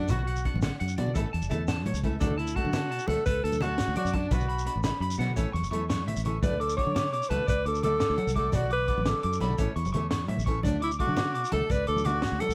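Highlife guitar band music in a warm, sunny mood, moving at 114 BPM in a straight 12/8 in D major, with a breathy, subtoned alto saxophone singing the melody up front with vibrato and scooped notes over a cycle of Bm, A and D. Beneath it, a twangy, slightly broken-up electric guitar spins arpeggios through tape echo, a picked acoustic guitar adds dark accompaniment with audible finger squeak, and a round, foam-muted fingered bass anchors the low end. A crunchy, gritty breakbeat kit with a high-tuned snare and punchy kick enters at 0.1 seconds together with damped, soft-handed congas and a grainy shekere, driving the groove in a dry mix, with a drum fill at 5.5 seconds.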